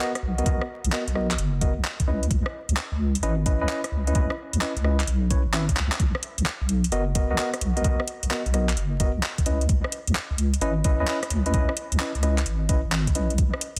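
A sunny, soulful UK garage excerpt in a swung two-step groove, moving between Bmaj7 and C#m9. A worn, slightly out-of-tune tine electric piano plays lightly overdriven stabs through a low-pass filter and dub echo over an up-front garage kit of handclaps, rim clicks and metallic hats, with soft clipping on the snare and a drum fill at 5.8 seconds. A knocking electronic kick drum and a deep, dark, chorused wobble bass sit loudest in a dense, heavily limited master with vinyl crackle and light reverb.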